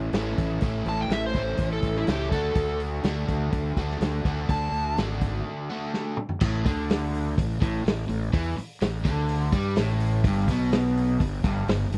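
A growling, fuzz-drenched fingered electric bass sits up front in this swaggering, driving blues rock and southern rock cut, moving between G1 and G2 from the start at 125 BPM in a straight 4/4 feel in A mixolydian. A crunchy, double-tracked overdriven guitar plays the picked riff alongside it throughout, while a vintage acoustic drum kit with a muffled, lo-fi character, dark cymbals, a medium-tuned snare and a tight kick joins at 0.1 seconds. An overdriven slide guitar with a dusky edge carries the melody from 0.9 to 5.0 seconds, ranging from E4 to A5 over chords that move from A to D. A break arrives at 5.5 seconds, capped by a drum fill that leads into a new section at 6.4 seconds built on A5 and then G5. The sound is dry and close, in the manner of a 1970s studio, with every part placed up front, and the passage is cut from a longer piece.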